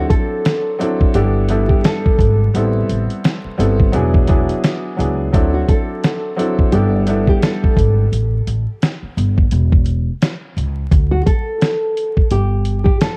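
Boom-bap hip-hop at 86 BPM with a tough, gritty swing, built on a thumpy, compressed sampler-style drum kit with a fat snare, a growly, woody pizzicato upright bass, a slightly detuned upright piano with audible action noise that drops out at 8.1 s, and a dark, thumb-plucked nylon-string guitar melody carrying analog delay, all set in a dry home cassette recording with vinyl crackle over chords moving from D7 through G69 and Am9 to C#m/E.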